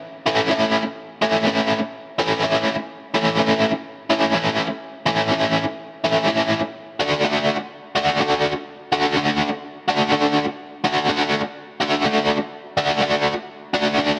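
A biting, overdriven electric guitar enters at 0.3 s and carries this kaleidoscopic, trippy rock fragment alone, its picked, double-tracked lines sitting up front with a shimmering tremolo. At a straight 125 BPM in 4/4 and in A major, tuned slightly low to A4 = 439 Hz, the harmony moves from A to D at 6.8 s. A moderate echo-chamber reverb with a long 2.7-second tail gives the playing a hazy, spacious sheen until it breaks off at 14.2 s.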